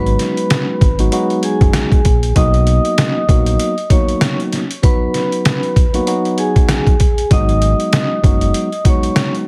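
The recording has a heavily compressed, radio-like sound with light reverb, giving this short, gritty boom-bap hip-hop cut a dark mood and a swung groove. A sampler-style drum kit sits up front, pitched down and re-recorded in a small room, with a thumpy kick, a medium-tuned snare, rim clicks and hi-hat. A deep dub fingered electric bass adds round, punchy low end before dropping out at 3.6 seconds and returning at 7.3 seconds. A mellow tine electric piano carries the chords through a cassette-tape haze, shifting from G#m7 to Bmaj7 and back. Above it, a vibraphone struck with hard mallets plays the melody with a metallic, ringing tone, a slow motor vibrato and a digital delay trailing each note.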